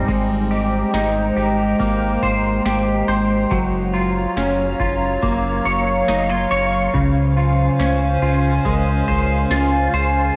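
A warbling, detuned pad of sustained chords, a clean, twangy electric guitar playing arpeggios, a round, deep analog bass and a booming drum machine with a deep kick, crisp snare, crash, ride and tambourine open this ethereal, blissful dream pop excerpt together. The pad has a nostalgic, lo-fi cast, with chorus, phaser, cassette tape character and shimmer reverb giving its slow-attack chords a hazy glow. The guitar sits up front, compressed and fingered, its arpeggios coated in ensemble chorus, tape echo and shimmer reverb. From 0.5 seconds, a very quiet vibraphone with soft mallets adds a metallic, ringing texture with slow motor vibrato. The harmony drifts through Abmaj9, Gbmaj7 and Dbmaj7 at a slow, straight pace, and the whole home cassette recording sits in a moderate spring reverb that lends it an intimate, dreamy softness.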